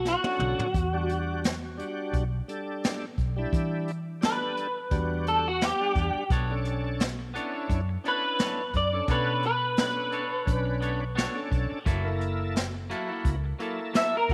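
A lightly reverberant, up-front mix carries this brooding, smoky piece of straight-eighth soul blues in B minor at 86 BPM, with a slight sixteenth-note swing, moving through Bm9, Em9 and F#7#9. A slightly broken-up, lo-fi electric guitar through a small old amp plays the picked melody with ensemble chorus, over a dark, round, foam-muted vintage bass and a brushed jazz kit with a punchy kick that opens with a fill. A shouting tonewheel organ with key click, light overdrive, chorus vibrato and slow rotary speaker sits behind them, and from 6.3 seconds a twangy clean electric guitar adds stabs.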